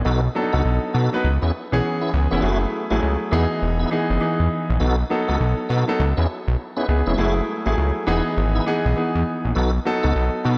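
Punchy and slick, this R&B clip moves at 101 BPM in 4/4 with a 16th-note swing, cut from a longer piece. A fat analog bass sits up front, its thick, detuned sawtooth tone shaped by a filter pluck, a moving notch, a fast attack and sustained notes. A clear baby grand piano plays accompaniment in a polished, present voice, while a tonewheel organ adds full, clean stabs with key click, chorus vibrato, a fast rotary speaker and analog delay. Each part plays from 0.0 to 10.6 seconds over a cycle of B7, C#m7, F#m9 and Emaj7 that returns to B7 at 9.6 seconds. A moderate plate reverb soaks the mix, leaving it dreamy.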